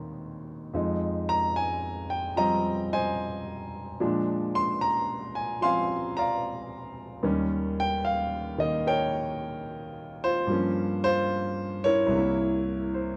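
A dark, warm production places a single grand piano up front in a small room with a moderate, short reverb. This is relaxed, sophisticated solo jazz in 4/4 at 74 BPM, with a swing feel on the eighth notes and a tonal centre of Eb mixolydian. The piano carries the whole piece, and its tone is warm, smooth and vintage, covering a span from C2 to Db6. The harmony moves from Eb7 through Fm7 and Bb7 back to Eb7, then turns toward Gm7b5 and C7 near the close at 12.1 seconds. This brief passage of about 13 seconds is cut from a longer performance and has an easy, unhurried feel.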